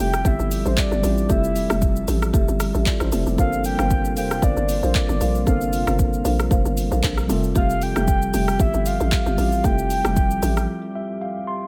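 A hollow, bouncy log drum bass sits up front in this deep, hypnotic amapiano excerpt at 115 BPM, alongside a deep house drum kit with a deep kick, dark hats, handclaps, rim click and shaker on a swung sixteenth feel. A soft octave-layered synth lead carries a round, detuned melody with chorus and delay over a mellow tine electric piano, a glassy FM pad that pumps in the background with ensemble chorus and reverb, and woody marimba stabs with delay, as the chords move from Fmaj9 to Gm11 and back. The drums and bass stop at 10.7 s, and the electric piano plays a short fill in the closing break until 11.7 s.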